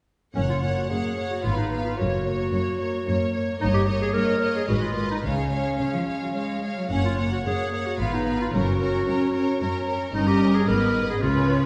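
A clear, up-front solo clarinet carries a second line through this graceful, lively classical-period movement in F# major, moving at a quick 110 BPM in 3/4. Around it, a lush, smooth violin section sings the melody while a more distant, expressive violin section adds a second line of its own, and a dark, woody viola section supplies the accompaniment. Bowed cellos and double basses anchor the bass with vibrato, all set back in a scoring stage with a reverb tail of 2.1 s, in an excerpt cut from a longer piece.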